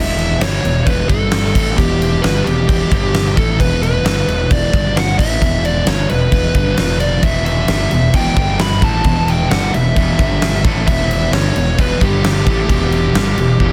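Dark and brooding, this short cut from a longer quiet-loud alternative rock piece moves in a straight 4/4, circling an E minor chord with brief shifts to G5 and a single turn to F5 at 6.8 seconds. A dark, distorted fuzz lead guitar carries the melody high above a sludgy, overdriven rhythm guitar riffing in the background, while a round, fingered fuzz bass growls beneath them. A huge arena drum kit enters at 0.2 seconds and sits up front, with a punchy kick, fat snare and bright crash cymbals ringing in a hall-like space. At 7.2 seconds a thick, bright fuzz guitar joins the riff in the background, thickening the low end of the arrangement. Light, small-room reverb surrounds the parts, and the dense, heavily limited modern master keeps the whole passage pressed forward and loud.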